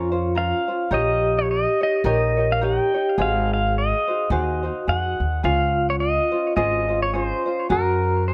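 A small room ambience surrounds this short, dreamy Hawaiian fragment, cut from a longer piece and lasting about 8.3 seconds. Set in Db major at 106 BPM in 4/4 with a gentle swing on the eighths, it moves at a languid pace through Bbmadd9, Eb7/Bb, Ab7, Dbmaj7 and Gbadd9. Up front, a clean, twangy electric pedal steel guitar carries the melody from 0.4 seconds, played with fingerpicks and slide, using volume swells and compression, with a delay trailing its lines. A vintage, band-limited vibraphone struck with medium hard mallets adds a metallic, ringing second line with a medium motor vibrato. A light, fingerpicked tenor ukulele picks out a warm acoustic accompaniment, while a woody, thumpy upright bass with gut strings holds down the dark low end in pizzicato, sitting close in the mix.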